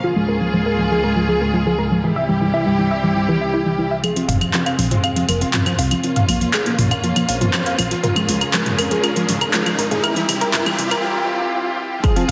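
Dark and cinematic, this melodic techno excerpt opens with a round, octave-layered synth lead carrying the melody over rich bowed strings and a nasal, driving sequenced arpeggio, all pumping under sidechain and bathed in lush hall reverb, before a deep house kit with metallic, overdriven hats arrives at 4.0 s, joined moments later by a fat, detuned analog bass, to launch a build-up of filter sweeps and a background riser that ends on a punchy kick at 12.0 s.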